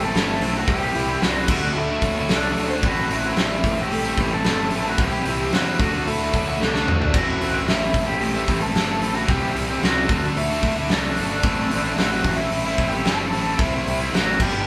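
Dark and cathartic, this quiet-loud alternative rock excerpt at 112 BPM sets a lo-fi overdriven lead guitar melody over a bright, hollow-body semi-hollow riff with spring reverb, a very quiet dark fuzz guitar riff, a growly fuzz bass, and a big, roomy drum kit with a fat snare and punchy kick, while a boxy fingerpicked acoustic archtop plays background arpeggios until 7.2 s, just after a drum fill, all moving through Am, C and Dadd9 as the band plays live in one large room.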